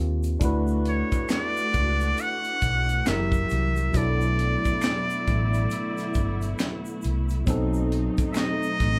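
A tine electric piano and a vintage muted fingered electric bass open this soulful, smooth neo-soul and R&B excerpt together, the piano clean and the bass dark, round and punchy, set up front. A tight funk drum kit joins at 0.2 seconds with kick, snare, hi-hat and handclaps, its high-tuned snare and rolled-off top giving a small-room feel, while an egg shaker and finger snaps sit softly in the background. The slow 68 BPM groove swings its sixteenths, and a lush studio string section enters at 0.4 seconds, bowed sul tasto with a soft attack and gentle vibrato. At 0.9 seconds a trumpet with straight mute takes the melody, close-miked and nasal, with breathy tone, scooped notes and jazz-style vibrato. The harmony moves from D6 through F#7b9 and Bm7 to B7b9, and the whole band plays live in one room with light reverb.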